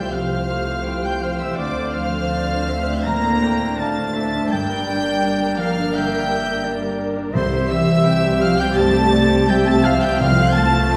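A wet scoring-stage reverb places this cinematic, emotional orchestral cue at a distance, as if heard from further back in the hall. In a free, rubato 4/4, a soft-attacked violin section playing sul tasto carries a tender, floating melody up high. A second violin section, a bright oboe, a roomy clarinet and a hollow, airy flute ensemble trace a second line beneath it. Dark, woody violas with vibrato and a polished grand piano fill out the accompaniment, while a mellow French horn section holds sustained chords and a pure cello section and a lush, distant double bass section anchor the low end. Very quiet timpani, played with soft mallets and sounding round and close, enter at 7.3 seconds to add gentle weight near the end of this moving excerpt.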